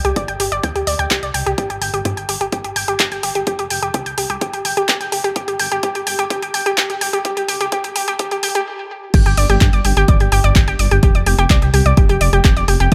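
A light, digital ambience surrounds this melodic techno excerpt at 127 BPM, where an up-front, round and nasal analog pluck spins chorused, delayed arpeggios over a menacing, detuned saw bass driven through tube saturation, both pumping against the sidechain. An analog drum machine's crash, handclaps and hi-hat sound from the opening, and a punchy, layered electronic kick with a tape-warm, large-room character enters at 0.2 seconds, carrying a build-up that halts briefly at 8.7 seconds. The drop lands at 9.1 seconds, moving the melancholic, cinematic harmony from Csus2 and F5 onto G5.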